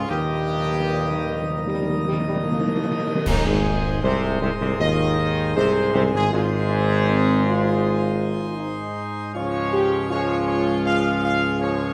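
A triumphant, regal classical fanfare opens with a dark trumpet section on the melody over sustained chords from warm French horns, clear trombones in the background and a brilliant, chiffy pipe organ plenum, with a mellow tuba up front on the bass, while hard-mallet timpani play a fill until 3.2 seconds, a band accent lands at 3.3 seconds, and bright, close cymbals and concert bass drum sound until 4.8 seconds, the whole ensemble heard in a stone room's reverb over an uneven pulse.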